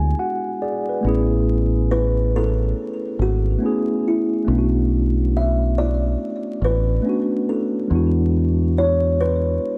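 A short fill on mellow tine electric piano, tinted by cassette tape, opens this hazy, melancholic lo-fi hip hop excerpt at 70 BPM with swung sixteenths in B dorian over a round, dark fingered dub bass, and at 1.9 seconds a woody, airy kalimba takes the melody as the chords move from E9 through Amaj9 and Bm7 back to E9, in a small room with light reverb and vinyl crackle.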